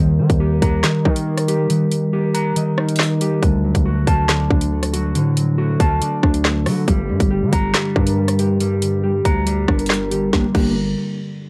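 Drill hip hop at 139 BPM in a half-time feel and G harmonic minor, menacing and dark, where a ringing, thumb-plucked concert harp and a clean, dark electric guitar arpeggiating through analog delay sit over a heavy, distorted 808-style bass and an overdriven electronic drum kit of hard-clipped kick, woody snare, metallic hats, rim clicks, handclaps and crash that enters at 0.3 s, with a break from 1.7 to 3.4 s, chords moving from Eb to D to Gm, and a cassette-tape haze over the harp, guitar and drums in moderate studio reverb.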